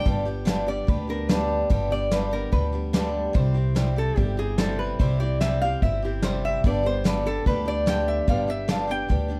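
A dark, warm production with light reverb frames this heartfelt, nostalgic honky-tonk and classic country excerpt, cut from a longer piece, moving at 146 BPM in a straight 4/4 in G major over a simple G to C and back to G progression. Up front, a boxy picked archtop guitar carries the accompaniment beside a woody pizzicato upright bass, while a soft brush kit sits distant and roomy with a tight kick, medium-tuned snare and hi-hat. Entering at 0.7 seconds, a lap resonator guitar played with a steel bar and fingerpicks adds a metallic, nasal second line that stands out as the solo voice.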